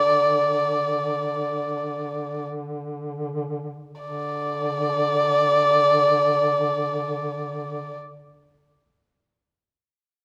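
Caucasian folk lament in free time, longing and mournful, in which a dark, nasal, woody bowed erhu carries the melody up front with vibrato and portamento, slowing over the first 4 seconds, above a distant, mellow duduk drone with scooped notes, all set in a moderate recital-hall reverb and cut from a longer piece.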